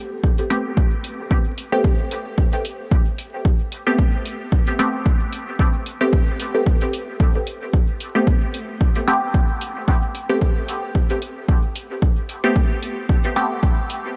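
Hypnotic and meditative, this dub techno fragment cut from a longer piece sets a punchy analog kick drum up front beside a lightly swung electronic hi-hat, both re-recorded in a small room, while a muted, deep, detuned sawtooth chord stab with a filter sweep sits forward, coloured by chorus, phaser, sidechain pumping and dub echo, in a dreamy mix drenched in huge ambient reverb and vinyl crackle.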